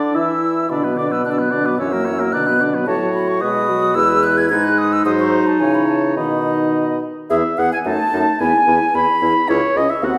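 A quick, spirited classical-period movement for wind quintet in E major, moving at 110 BPM in a straight 2/4, cut from a longer piece and lasting about ten seconds. A silver concert flute carries the melody high above the group, its tone pure, hollow and touched with vibrato, heard close and tongued. Beneath it a warm oboe sings a second line with light vibrato and a smooth top, while a clear clarinet and a mellow, distant-sounding French horn fill in the accompaniment. An up-front bassoon anchors the bass with a soft attack and gentle vibrato. The harmony wanders through B minor and F-sharp colours before settling into E major at 7.3 seconds, where a second section begins, all heard from further back in a recital hall whose wet reverb lends a full bloom.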